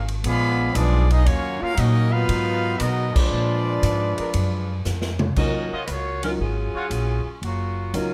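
A short excerpt of swinging, brassy big band jazz in Eb minor at 117 BPM opens with a bright trumpet section carrying the melody over a close-miked trombone line, a woody pizzicato upright bass and a punchy big-room drum kit, with a background trombone pad holding chords, a band accent at 3.1 seconds and a drum fill leading to 5.4 seconds, where a distant, roomy saxophone section takes the melody over a deep-voiced grand piano and brief trumpet stabs.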